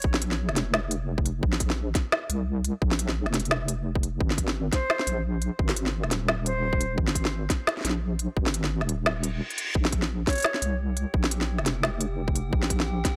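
Half-time drum and bass in Bb dorian at 173 BPM with a light swing, this dark, cinematic fragment rides a deep, detuned wobble bass with chorus under a tight, overdriven electronic kick and an organic electronic kit of woody snare and crisp hats. A sub drop opens it, and a reverse cymbal at 9.3 seconds leads into a Bbsus2 chord. An airy silver concert flute with tape echo appears briefly between C5 and Db5, and an eerie, warbling FM drone with phaser and reverb sits in the background from 10.8 seconds, all in a dry, gritty hardware sound.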